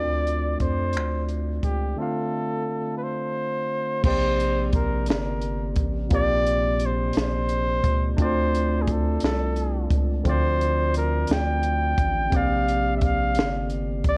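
A flugelhorn, a barky, clean tine electric piano through a combo amp, and a round, deep analog bass open this slow six-eight R&B excerpt together, with a compact cocktail drum kit joining at 0.3 seconds. The tempo is an unhurried 58 BPM in dotted quarters in Bb major, and the mood is warm and sensual. The flugelhorn carries the melody up front in a jazz-style solo, its warm tone colored by vibrato and scooped notes. Beneath it, the electric piano accompanies over alternating Dm7 and Bb69 chords, while the sustained, fast-attack bass sits dark and forward. The acoustic kit, with crash, hi-hat, finger snaps, a punchy kick and a high-tuned snare, has a smooth, rolled-off top, and a break from 2.0 to 4.0 seconds leads into the second section. The whole recording sits in a small room and carries the worn, warbling pitch drift of old cassette tape.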